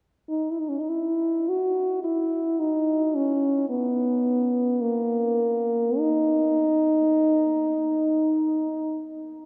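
A classical, free and expressive passage for unaccompanied French horn, cut from a longer piece, unfolds with a yearning, lonely mood at a slow, rubato pace of around 34-55 BPM in 4/4. The mellow horn sits up front with a smooth top, playing solo from 0.3 to 9.1 seconds within a range of A#3 to F#4. A wet cathedral reverb with a long 7.0-second decay surrounds it, lending the lone line a vast, echoing space.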